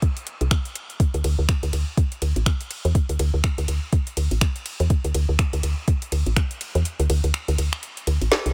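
This excerpt of minimal techno moves at 123 BPM in 4/4, with a swung sixteenth-note feel that gives its quirky, clinical mood a slight lilt. A soft, up-front electronic kick anchors the groove from the start and drops away after 6.5 seconds. Alongside it, an overdriven garage-style kit layers finger snaps, metallic hi-hats, ride cymbal and a woody snare, sitting lower in the mix. At 0.4 seconds a dark, round FM bass enters, moving between A1 and E2 with a fast attack and decaying notes that pump against the sidechain. A drum fill at 8.3 seconds closes the passage, all set in a digital ambience.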